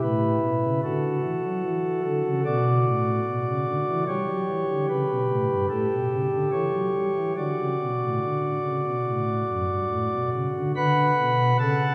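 A pipe organ on soft flute stops carries this reverent, serene chorale-style classical passage alone, its romantic voicing sitting up front with a gentle, warm glow and a flexible rubato pulse. The harmony moves from A through D, B minor and E minor to A7 before settling back on D, and a new section begins at 10.8 s just as this short cut from a longer piece ends. A wet church reverb with a long decay surrounds it, giving the room a distant, spacious sound.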